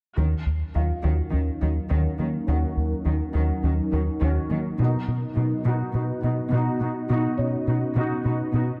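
A rubbery, bouncy square-wave bass riff sits up front from the opening moment, joined at once by a rich cello section holding the low end, a distant viola section bowing with focused vibrato, and a harp-like synth pluck ringing out soft arpeggios in the background. This brooding, relentless cue is cut from a longer piece of hybrid orchestral and electronic film score, moving in a straight 4/4 over a shift from Ebm7 to B at 4.8 seconds. An ethereal, airy pad of detuned unison voices fades in with a slow attack at 0.9 seconds, spreading sustained chords through its own chorus and reverb. A felt-muted upright piano adds an intimate texture in the background, its audible action noise and delay giving its middle and upper register a hushed, muted quality. The whole passage works as a build-up under a continuous filter sweep, set on a scoring stage with moderate reverb and a dark production.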